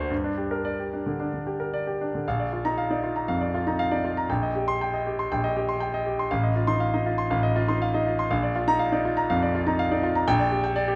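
A bright concert grand piano opens alone on a G minor chord, launching this stormy, passionate classical study in B-flat major. The tempo sits around 120 BPM in 4/4, but the rubato feel lets the pulse stretch and push with virtuoso freedom. At 2.3 seconds the harmony turns to B-flat, moving through C minor seventh and F seventh chords before settling back on B-flat and closing on G minor over B-flat. The piano spans from deep bass notes up into a brilliant, polished upper register, its short-sustain tone placed up front and present. A moderate recital hall reverb surrounds the instrument, and the overall production leans dark, with tuning set to A4 = 443 Hz in this brief passage cut from a longer piece.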